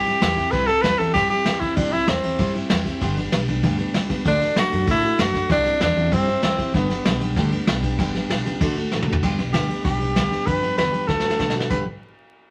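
This is a retro, rowdy rockabilly excerpt in G major, driving at 193 BPM in a straight 4/4. The bright tenor saxophone plays from the start, up front, delivering a pop-style solo melody with light vibrato, then stops at 7.3 seconds before returning at 9.5 seconds. Beneath it, a picked steel-string acoustic guitar provides a warm dreadnought accompaniment with audible finger squeak, and a pizzicato upright bass on gut strings gives a woody, thumpy low end. A vintage brush drum kit sits up front with a dark, smooth sound, a punchy kick, a medium-tuned snare and a rolled-off top, adding short fills before the new section at 9.2 seconds and again near the close. The harmony moves through C, G and D, and moderate studio reverb and vinyl crackle give the whole an aged, period feel.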